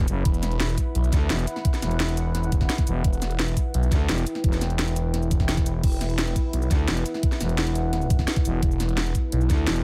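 Futuristic and mechanical, this short cut of dark technical drum and bass rides on a growling FM bass and a swirling, phased, detuned saw bass with pumping sidechain and overdrive, both thick and up front, while a deep, moody ambient pad holds an Emadd9 chord with chorus, reverb, sampler grit and its own pump. A layered kit of cracking snare, bright hi-hats, shaker and crash comes in at 0.1 seconds, joined at 0.3 seconds by an overdriven knocking electronic kick, both re-recorded in a small room. The overall sound is dry and loud.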